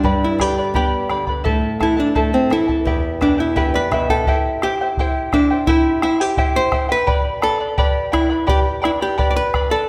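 From the first moment an up-front archtop guitar, clean, dark and hollow-bodied, carries the melody of this melancholic yet festive Andean folk excerpt at 85 BPM in a straight 2/4, tuned to A4 = 437 Hz. Beneath it sit a shimmering charango, fingerpicked on double strings with some octave-doubled courses, a round, close and dry bombo, and a deep, classical-toned nylon-string guitar. The chords move from G through Am and Em, and the nylon-string guitar adds a fill before it stops at 4.3 s, where the second section shifts to C and returns to G, all set in a wet recital-hall reverb.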